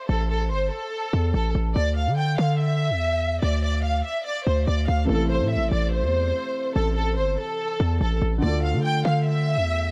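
A small room ambience wraps this short cut from a longer drill track, giving it a close, slightly enclosed feel. The mood is menacing and ominous, moving at 144 BPM in 4/4 with a half-time feel in A minor, tuned to A4 = 444 Hz. A lush studio violin section carries the melody from the opening, bowed with expressive vibrato and sitting up front as an ensemble. A hard-hitting 808-style bass enters at 0.1 seconds, punchy and heavy, with a sine core, a noise layer, a fast attack and a decaying tail, sitting up front in the mix. At 5.0 seconds a felt-muted upright piano joins in accompaniment, soft, mellow and intimate with a boxy tone and audible action noise. The harmony opens unaccompanied by chords before settling on Dmadd9, then moves through Am and Dm as the second half unfolds.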